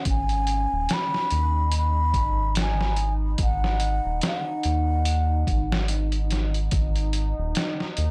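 A slow 72 BPM trip hop groove in 4/4 with a lazy 16th-note swing comes from a compressed, pitched-down sampler-style kit of thumpy kick, hi-hat and snare beneath a deep, round analog bass, while a moody ambient pad carrying chorus, reverb and 12-bit sampler grit holds sustained chords throughout and an airy, hollow wooden flute with dub echo sings its melody until 5.9 seconds, all in a dry, gritty, hypnotic and cinematic fragment cut from a longer piece.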